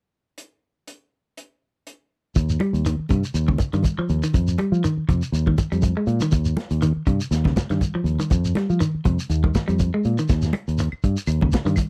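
A crunchy, gritty breakbeat drum kit with a tight kick and dark, rolled-off top opens this joyful, driving afrobeat excerpt at 121 BPM in Eb mixolydian, joined at 2.4 seconds by a round, punchy fingered bass, bright background congas and a grainy shekere, then by twangy, slightly broken-up electric guitar arpeggios, with woody claves appearing faintly at 10.5 seconds in a dry, close 1970s-style studio sound.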